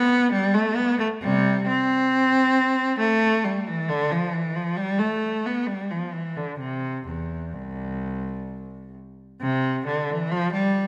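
In a lilting triple metre shaped with rubato, this flowing, dance-like baroque-style suite movement for solo cello moves with classical poise through a brief passage cut from a longer piece. The single bowed cello sits up front, its tone rich and focused with vibrato, ranging from its low register up through the middle of the instrument. A moderate scoring-stage reverb with a 1.8-second tail lends the lone line a sense of space as the opening theme returns near 9.4 seconds.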